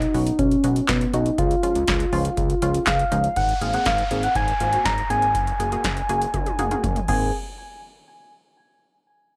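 Wistful yet bright synth-pop at 121 BPM, where a round, gentle FM lead with chorus and analog delay carries the melody over a fat, nasal analog bass, an electro drum machine with deep kick, punchy snare and metallic hats, and a funky, dark polysynth comp, as a downlifter enters at 3.4 seconds and a drum fill at 6.3 seconds closes this gritty, lightly reverberant fragment of a longer piece.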